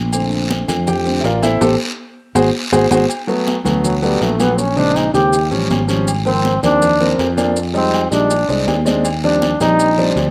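A clear, vintage-toned trombone takes the solo from 3.8 seconds in this sunny, danceable Afro-Cuban jazz clip, after a short opening where a warm, intimate grand piano with audible action noise and long sustain leads, punctuated by a band accent and a drum fill. Underneath, a bright, growly fretless electric bass and the up-front piano carry rich jazz harmony. The percussion adds high-tuned, ringing congas with slapback echo, metal-shell agogo bells and timbales set back in the mix, a raspy guiro and grainy, mellow maracas, all in a dry outdoor sound.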